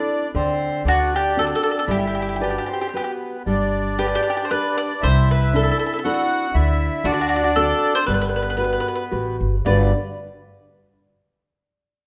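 In a rubato three-beat lilt, this lively, sunny Italian folk serenade, cut from a longer piece, sets a warm picked mandolin with doubled strings at the front to carry the melody, while a reedy, close-miked accordion sings a full second line beneath it. A fingerpicked nylon-string guitar with a deep classical tone and the odd finger squeak provides the accompaniment, and from 0.3 seconds a thumpy pizzicato upright bass on gut strings adds a woody pulse. Chords such as D7 and Gmaj7 colour the harmony, and a moderate recital-hall reverb gives the ensemble a gentle sense of space.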